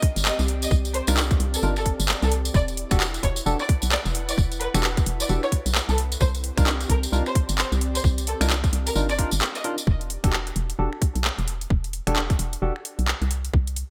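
With light reverb and a bright 1980s-style digital sheen, this soulful, skippy two-step UK garage cut in E minor runs at 131 BPM with a swung 16th feel: a tight, up-front electronic kick and a layered garage kit of finger snaps, handclaps and metallic hi-hats in gated reverb drive a hollow, bouncy FM bass, while a jingly acoustic tambourine, a distant, woody violin section with vibrato and digital delay, a breathy, sidechain-pumped pad with chorus, and barky, lightly overdriven tine electric piano stabs through analog chorus and delay fill out the drop, until the pad, tambourine and violins drop out by 9.9 s and leave drums, bass and piano to carry a short closing stretch over Em11.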